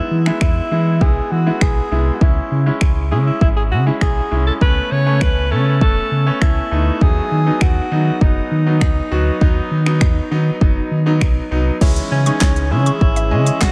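A breathy alto saxophone carries a smooth pop-style melody with delay over bright concert grand piano, a deep sub bass with octave, both pumping with sidechain, and an overdriven, up-front deep house drum kit with a fat snare, finger snaps and handclaps in this summery, upbeat dance-pop excerpt at 100 BPM, moving through E, C#m, Aadd9/C# and B before a soft supersaw with phaser and a hollow, bouncy square pluck with chorus enter in the background at 11.8 seconds.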